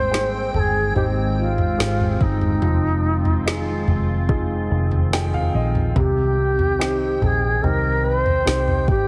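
A mellow bamboo bansuri carries the melody from the first moment, pure and expressive with vibrato and tongued notes, sitting distant yet up front with a touch of digital delay over a polished grand piano, a glassy FM pad with ensemble chorus and long, ethereal release, and a dark, round, foam-muted fingered electric bass. A produced R&B drum kit with a soft kick, a woody snare and toms joins at 0.1 seconds, and the piano adds a fill from 4.7 to 6.0 seconds as the chords move from Abmaj7 through Fm7 to Cm. This longing, emotional pop ballad fragment has light reverb and a heavily compressed, radio-like sound.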